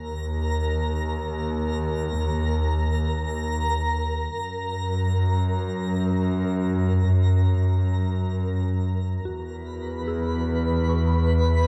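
A rich, bowed double bass section sits up front in a small, lightly reverberant room, its lush, focused tone carrying vibrato beneath a twinkling granular texture that sparkles with an octave-up shimmer and fades out over the first 9.3 seconds. This peaceful, luminous ambient passage in free time is cut from a longer piece, moving through chords of D#5, F# and E. At 9.3 seconds a soft, pure synth bell enters in the background with mellow arpeggios, colored by chorus and delay.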